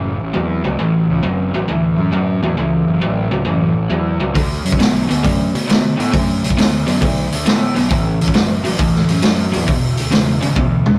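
A swung 4/4 feel drives this swaggering, gritty blues rock and southern rock excerpt, where a compressed, double-tracked overdriven electric guitar riff with spring reverb and a punchy fuzz-picked electric bass open before a vintage drum kit with a medium-tuned snare and rolled-off top enters at 4.4 s, the chords moving from A to D, then A5 and E5, ahead of a drum fill at 10.6 s, in a rough, saturated rehearsal-room sound.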